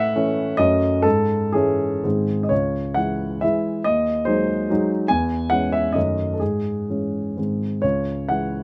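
Close, detailed microphones and a light reverb place a grand piano up front, its tone warm and its notes short in sustain. This is a romantic classical dance in 3/4 for solo piano, capricious and wistful, moving in C# minor with dotted rhythms and a free, rubato feel. The tempo drifts between 115 and 152 BPM, and the piano spans C#2 to G#5 across the 8.6 seconds. A brief opening phrase settles on G# at 2.0 seconds before a longer second passage begins at 2.5 seconds on C#m. The harmony returns to D#m7b5/F#, C#m/G# and G# before closing on C#m at 7.8 seconds, in a fragment cut from a longer piece.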